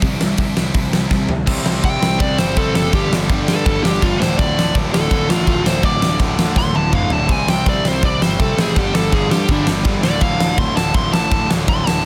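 Rowdy and rebellious, this punk rock excerpt charges along at 165 BPM in a straight 4/4, with three picked rhythm guitars (an overdriven one, a scooped, double-tracked high-gain one and a tight distorted one, all bright and sitting back in the mix) churning out riffs over a growly, fuzz-laden picked electric bass. A big acoustic rock kit sits up front with a punchy kick, fat snare, hi-hat, crash and toms in a bright stone room, throwing in fills at 1.1 and 6.6 seconds. From 1.8 seconds a dark, smooth overdriven lead guitar with delay takes a solo over power chords moving through C5, G5 and D5, all in a dense, heavily limited modern master with little reverb.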